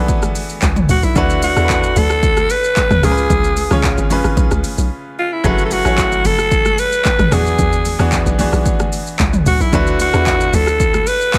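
A breathy alto saxophone carries the melody up front in this hypnotic, deep amapiano excerpt, its raspy, gritty tone shaded with vibrato and a touch of delay as it enters at 0.9 seconds. Beneath it, a hollow log drum bass bounces with a fast attack and mellow decay, while an overdriven deep house drum kit drives the 112 BPM groove with a punchy kick, metallic hats, handclaps, rim clicks, shaker and toms. A brilliant baby grand piano adds polished, short-sustained chords, moving through harmonies such as E9, D69, C#7 and F#m11. Soft-handed congas with a thin skin sit in the background, heard in a live room. A brief break around 4.9 seconds interrupts the steady 4/4 flow before the groove resumes, all set in a small room ambience.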